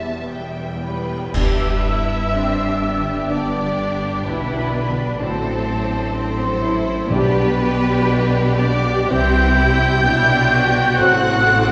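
A slow, solemn and elegiac romantic orchestral movement in G major, moving with rubato at around 56-64 BPM, this excerpt opens on an E minor chord with lush, vibrato-rich string sections: a focused violin melody set in the background, a smooth-topped chamber violin line, intense violas, distant cellos and clear double basses, all over a very quiet, ringing harp playing arpeggios. At 0.8 s a pure, bright flute ensemble enters with a soft-attacked second line above. At 1.3 s a dark cymbal and bass drum accent marks the arrival of G major as a distant, roomy French horn section begins sustained chords. After the harmony shifts to D7/A, round, soft-mallet timpani touch in at 7.1 s on G/B, and the music then moves through Cmaj7 to an F#dim/A, all bathed in a hall-like reverb.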